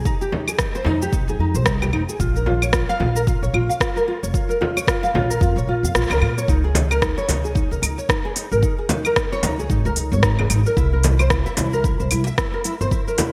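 A full-bodied, fingerpicked nylon-string guitar sits up front in this earthy, meditative organic downtempo excerpt, its arpeggios colored by ensemble chorus and digital delay over chords moving from Fm9 through Bbm and Dbsus2 to C7. A woody pizzicato upright bass anchors the low end beside a deep electronic kick, while an up-front, produced afro-pop kit of metallic hats, claves, rim click and shaker, treated with gated reverb, rides a swung sixteenth feel over a large acoustic frame drum. The kick drops out at 6.0 seconds for a band accent before the second section arrives at 6.5 seconds, framed by a bright 1980s-style digital production and a lush hall reverb.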